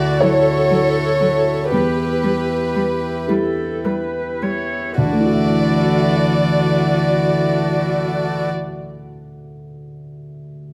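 Close, detailed microphones and a light reverb give this brief neoclassical passage for piano and strings a tender, intimate sound. Rubato in 6/8, it slows over its first 5.0 seconds, moving from a Dadd9 chord to E minor and back again. A chamber violin section carries the melody up front, warm and bowed sul tasto with light vibrato and a soft attack, while a dark, woody upright piano with long sustain supplies the accompaniment. A distant viola adds its own vibrato in the background, a clear, nasal cello floats a second line, and a reedy, breathing harmonium holds sustained chords. The strings and harmonium stop at 8.5 seconds, leaving the piano to ring on alone until 10.7 seconds.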